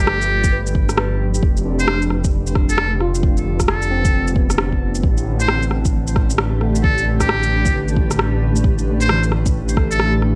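A buzzy, close-miked trumpet with a metal mute carries a melancholic, ghostly future garage melody with vibrato and scooped notes at 133 BPM in A minor, over a menacing, saturated detuned saw bass up front, a blurred granular cloud pad and a gritty overdriven electric piano in the background, all three pumping to the sidechain, while a deep electronic kick from 0.4 seconds and a tape-warm rim click and shaker sit in the swung 16th-note groove through this short cut moving from G9 to F6 to Am9.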